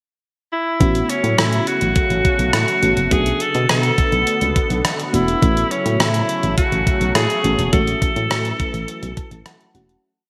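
Nostalgic and glossy, this short 1980s-style pop piece moves at 104 BPM in a straight 4/4 feel in A major, with a brief pickup before the verse settles in at 0.8 seconds over chords of A69, Bm7 and back to A69. A bright, forceful alto saxophone carries the motif-based melody up front, its vintage tone touched with vibrato and a delay echo as it shapes sentence-like phrases. Beneath it, a clean 12-bit digital drum machine gives a thumpy kick, hi-hat and rim click a big backbeat, with gated reverb adding punch, while a round, punchy FM bass drives a syncopated pop-funk line. A dreamy, full-bodied FM electric piano with a soft pad layer sits in the background with chorus, pushing close-voiced chords and adding grace notes and a short fill from 8.9 seconds. An airy, evolving sawtooth pad sustains resonant chords with a filter swell and chorus, and the whole piece, set in a lush hall reverb with sheen typical of digital 1980s production, fades out from 7.7 seconds to its close at 10.0 seconds.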